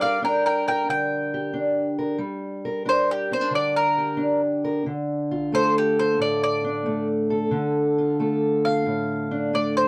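A swung 4/4 feel carries this smoky, brooding acoustic country blues duo, where a bowl-back mandolin picks the melody on its double strings, up front and warm, over an up-front fingerpicked parlour steel-string guitar whose old strings give a dark, woody, boxy accompaniment, both in a small wet booth as the harmony moves from Gm to Dm at 4.9 seconds in a short cut from a longer piece.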